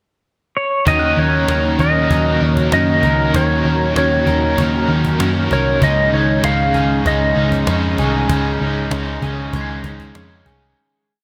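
A twangy, clean lap steel guitar carries a free, sliding melody with volume swells through this short, hazy and melancholic dream pop piece in Eb dorian at 97 BPM, entering during a brief pickup bar and moving from Ebm7 to Dbsus2 at 5.8 seconds. Beneath it, a bright overdriven electric guitar strums eighths in barre chord shapes with harmonic tremolo and lush chorus, a slightly broken-up, lo-fi electric guitar through a small old amp rolls fingerpicked arpeggios, a sawtooth string machine cello pad sustains full-bodied chords in the background, a round, foam-muted vintage bass holds steady eighth notes, and a woody, close and dry cajon keeps a slow tom and kick pulse with faint snares. A bell-like glockenspiel played with soft plastic mallets scatters airy notes early and again near the end, all bathed in a lush hall reverb with bright 1980s-style digital production before a fade-out from 8.3 to 10.8 seconds.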